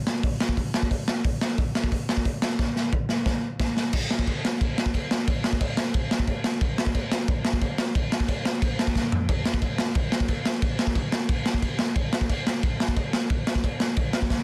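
Punk drum excerpt at 179 BPM in a straight 4/4, rebellious and upbeat, where a raw, up-front acoustic garage kit of crash, hi-hat, punchy kick, medium-tuned snare and toms sounds gritty and saturated with a rolled-off top and a pumping small-room sound, firing off a fill at 2.6 seconds that carries it into a new section at 3.9 seconds and another brief fill at 9.0 seconds, all held in a dense, heavily limited modern master with little reverb.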